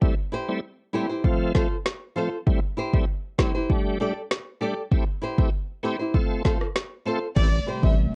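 A tough, sultry dancehall groove opens with a shouting tonewheel organ and an electronic drum kit. The organ is lightly overdriven and colored by chorus vibrato, a slow rotary speaker and sidechain pumping, while the drums hit with a deep kick, a woody snare, rim clicks and crash cymbal, all overdriven and up front in a small room. From 0.3 seconds, a fingerpicked acoustic flamenco guitar adds up-front arpeggios over a cycle of Am7, F and Dsus4 chords. At 7.4 seconds, a round, square-and-sine analog bass arrives alongside a lush, bowed violin section carrying a brief, smooth melody, and at 7.6 seconds an ethereal, airy pad with detuned unison voices and ensemble chorus swells into sustained chords. The dry mix sounds worn, like an old cassette, with warbly pitch drift and a dull top end, and the passage is cut from a longer piece.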